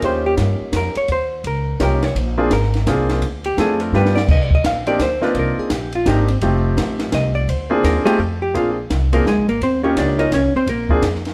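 A brisk jazz waltz in 3/4 at 169 BPM swings its eighths through this playful, sophisticated snippet of small-group swing and bop in Bb mixolydian, cut from a longer piece with the band playing live together in one room under moderate studio reverb. A clean, dark-toned hollow-body electric guitar, picked and up front, solos across the whole stretch over a natural, short-sustaining baby grand piano comping through chords like Eb9, Bb9 and Cm7. A woody, growly pizzicato upright bass and a compact cocktail kit fill out the rhythm section, the kit smooth with dark cymbals, a high-tuned snare and a punchy kick, and it drops a quick fill at 3.9 seconds.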